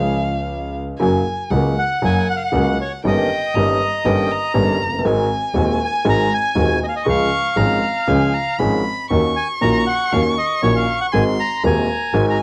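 Tango with a playful, elegant mood and a loose rubato feel, cut from a longer piece and captured as a home recording on cassette with light reverb and a small room ambience. A bowed violin with vibrato, portamento and a soft attack sings an expressive second line, while a warm concert grand piano with deep bass and short sustain sits up front in the accompaniment; both carry a cassette-tape colour. A dark, intimate double bass played sul tasto anchors the low end, and from 1.8 seconds a reedy, bright bandoneon takes the melody up front.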